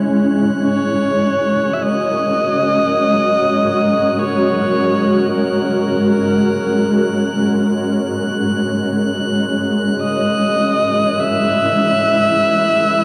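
Floating in free time, this spacious, melancholic ambient piece is cut from a longer work, opening on a cloudy, detuned granular pad that holds full-bodied sustained chords over an F#add9 harmony, while a glassy, chorused texture of drifting overtones shimmers high above. At 0.6 seconds a dark, woody electric violin enters up front, its bowed melody carrying vibrato and portamento through a diffuse ambient delay. A huge, wet reverb with an 8.3-second decay wraps the whole piece in a dark, warm production.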